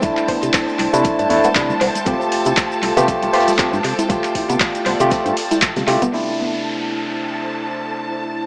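Deep house with a warm, sunny mood, this short excerpt rides a swung groove and moves from C6 to Fadd9/C and back. Up front, an overdriven tine electric piano plays barky, gritty stabs through a combo amp with tape echo, while a hollow, organ-like FM bass holds the low end until about 6.1 seconds, joined by a deep, tape-toned electronic kick that drops out at around 5.7 seconds. Metallic hats and handclaps from a layered electronic kit, a very quiet soft-mallet kit with a fat snare, a grainy tube shaker, and hard-hand congas entering at 1.4 seconds fill out the rhythm. Behind them, a silky string machine holds sustained chords with phaser and ensemble chorus, a rich, expressive violin section sustains a bowed note with vibrato, and a round, nasal analog pluck arpeggiates with 12-bit sampler grit and chorus. At 6.1 seconds the beat drops away, leaving the strings, violins and electric piano as a filter sweeps the string machine and an electronic downlifter falls beneath them. 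The echo-heavy mix carries sidechain pumping on the melodic parts, moderate spring reverb and a small-speaker character.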